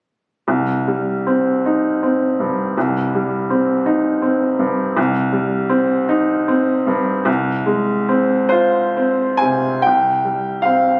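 Yearning and wistful, this brief fragment of a romantic classical nocturne in C minor unfolds in a slow, rubato 6/8 at around 42-55 BPM, played on a solo upright piano whose clear, woody, open tone sits up front and spans from C2 to Ab5. The harmony rests on C minor before shifting to F minor over a C bass at 7.3 seconds, then settles onto a bare C fifth at 9.9 seconds as a new section begins just before the piano stops at 11.0 seconds. The phone recording captures the room with light, club-like reverb and compression.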